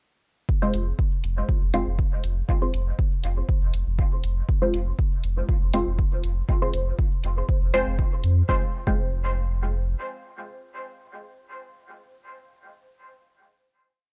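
Dub techno in F minor at 120 BPM: a deep, meditative piece where a punchy four-on-the-floor electronic kick and closed programmed hi-hats drive a steady groove, while a round sine sub bass sits off the beat, pumping against the kick and thickened with tube saturation. Sparse, muted chord stabs built from detuned sawtooth and square waves move one shape in parallel, with a filter pluck, phaser and dub echo giving them an evolving character. The groove runs from 0.5 to 8.5 seconds, after which a final chord stab rings out until 12.4 seconds, all captured in a dry, gritty hardware recording on cassette tape.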